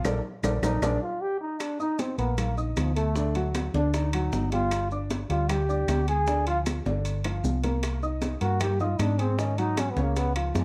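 Afro-Cuban jazz at 154 BPM in Eb major, danceable and sophisticated, where a distant, roomy trombone solo with vibrato and a soft attack enters at 0.6 seconds up front over a dark, round hollow-body electric bass and a natural baby grand piano. Background percussion of ringing high-tuned congas, tight bongos, woody claves and grainy maracas joins ringing metal-shelled timbales, with a band accent and drum fills near the start and another fill around 6.9 seconds, all in light reverb.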